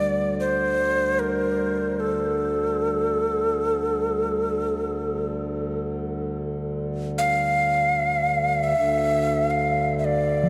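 A breathy cedar flute in the Native American style opens this meditative world piece at 0.0 seconds, sounding over a dark, reedy pedal harmonium drone on a low D and a brief, metallic ring from a bronze singing bowl that lasts until 0.4 seconds. In free time and D minor, the flute carries a haunting melody between A4 and F5, its woody tone up front with a crisp, chiffy attack, gentle vibrato and lifted highs, trailed by a delay. The harmonium holds its mellow, breathing drone as a second up-front voice. The singing bowl, played with a suede striker, sits in the background, close-miked and dry, with a full body and slow beating, and returns only at 10.4 seconds. A huge, wet ambient reverb with a 7.5-second decay and the character of cassette tape wrap this fragment, cut from a longer piece, in a haze of space.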